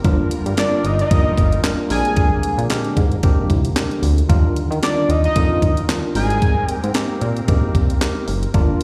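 Early-eighties boogie funk at 113 BPM with a swung 16th feel, this feel-good, danceable snippet from a longer piece rides a Gm7 to Bb13 to Ebmaj9 to Abmaj9 progression, carried by a glossy, up-front chorused synth bass with a plucky filter and a clean 12-bit drum machine with thumpy kick, medium-tuned snare, hi-hat and handclaps. A worn, slightly out-of-tune tine electric piano with light overdrive, plate reverb and slapback echo plays the accompaniment, while a smooth, detuned analog pad holds chorused chords in the background. From 0.6 to 6.9 seconds a fat sawtooth-and-square lead with sub octave, vibrato and filter sweep sings the melody up front, all heard as a live gig through the venue's PA with recital-hall reverb.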